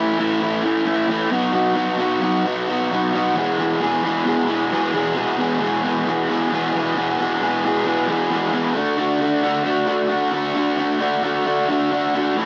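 A home cassette recording with light reverb carries this swaggering, rowdy rock fragment, cut from a longer piece and moving at 133 BPM in a straight 4/4 feel in E mixolydian. A single raw garage guitar, electric, picked and double-tracked, sits up front with overdrive and a cassette-tape grit, ranging from E2 to A4 as it plays alone throughout. It moves through A, B and E chords in the opening section, then shifts into a second section at 5.2 seconds, reaching D at 8.8 seconds.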